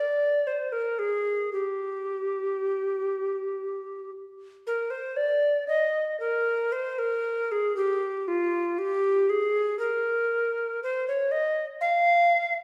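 This classical, baroque-style fantasia for solo tenor recorder moves in an unhurried triple metre with a free, rubato feel, by turns serene and dance-like. The recorder is the only part and plays throughout the roughly 12.5 seconds, ranging from F4 to F5. Its tone is mellow and woody with an airy edge, its notes begin with a crisp, audible chiff, and the sound carries vibrato. The playing is expressive and sits up front, carried by the generous reverb of a recital hall, likely a church or concert hall, which lets the notes hang for about 1.5 seconds. The recording is a brief fragment cut from a longer piece.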